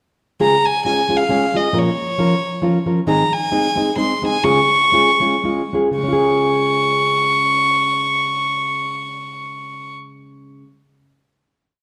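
This short, complete mariachi piece in 3/4 opens at 0.4 seconds with a rich violin and a nylon-string guitar entering together, and the mood is festive and proud. The bowed violin carries the melody up front, its reedy, gut-string tone in a period style shaping motif-based phrases high in its range. Also up front, the fingerpicked acoustic guitar supplies a dark, full-bodied accompaniment, mixing chop strumming with open chord shapes in a deep classical voice. The lilting, swung feel stretches freely, slowing down from 3.1 to 6.0 seconds before the piece settles onto a final chord. The violin falls away at 9.9 seconds while the guitar rings on to 10.7 seconds, all set in a recital hall's lush reverb with a mellow, dusky production.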